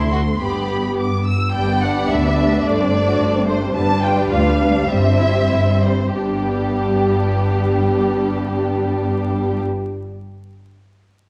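Spirited and cheerful, this short cut from a quick classical-period orchestral movement in G major moves in a straight 2/4 at 88-110 BPM, slowing down between 3.2 and 6.1 seconds before arriving on G at 6.1 seconds. A lush, distant violin section carries the melody with portamento and vibrato over a focused second violin line, while smooth-topped violas fill in the accompaniment and the bass is held by an even double bass section and a cello section sitting in the background. The bowed strings sound through a recital hall's reverb, with vinyl crackle layered over the top.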